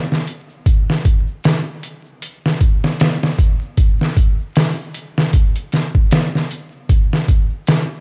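A lazily swung trip hop groove in 4/4 rolls from a compressed, pitched-down sampler-style kit, its thumpy kick, medium-tuned snare and hi-hat sitting up front with a muffled, tape-warm tone, while an acoustic egg shaker and group handclap linger in the background of a small room, all wrapped in dark ambience and vinyl crackle for a smoky, cinematic excerpt.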